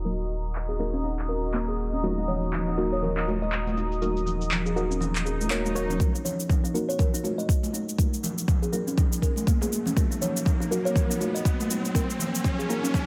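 Driving and earthy, this afro house passage, cut from a longer piece, rides a swung 4/4 groove on a single dark minor chord. A moody, detuned analog pad holds sustained chords under chorus while a deep, warbling chord stab with a vintage filter pluck repeats through digital delay, both breathing with sidechain pumping and the stab drawn through filter sweeps. A round sine sub bass sits up front until 6.0 seconds, and from 0.7 seconds a woody, hollow-boxed kalimba plays soft fingertip arpeggios through a low-pass filter and delay. The layered deep house kit brings cabasa, handclaps and toms under sweeping filters, joined at 2.0 seconds by ringing, high-tuned congas played with soft hands in a distant, large room. After an electronic swell, a deep electronic kick drives the second half up front as a riser and build-up climb to the end, all set in light reverb.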